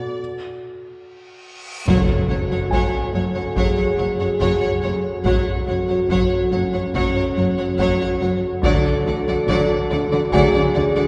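Cinematic suspense film score, eerie and mysterious, opening on a sparse break where a bowed violin section carries a lush, vibrato melody over very quiet, glassy glass harmonica chords and a worn baby grand piano texture in the background. A huge, bright reverse cymbal leads into an impact at 1.9 s, where the full ensemble enters: a distant second violin line, rich viola accompaniment, mellow French horn chords, a focused cello riff, an expressive cello bass joined by a very quiet, clear double bass section, heavy-stick taiko drums, and a short timpani part that ends by 3.1 s. The whole excerpt sits in a wet concert hall reverb, and the harmony shifts at 8.6 s.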